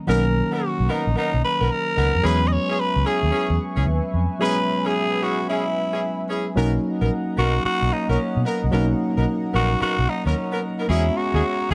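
R&B at 111 BPM in B major, this short excerpt from a longer piece has a bouncy, upbeat feel, with a swung sixteenth-note lilt in 4/4. A raspy, growling tenor saxophone carries the melody up front, its gritty tone softened by light vibrato, while a round, punchy, foam-muted electric bass sits close and dark beneath it. A worn tine electric piano, slightly out of tune and heard through a combo amp, supplies the accompaniment. A jazz-style horn section adds clear stabs with light vibrato from the start. At 2.6 seconds a mellow, shimmering pulse-width pad with a slow attack and chorus fades in low in the mix, sustaining retro, detuned chords over the Bmaj7 to E6 changes as the passage moves into a second section at 6.6 seconds, all sitting in light studio reverb.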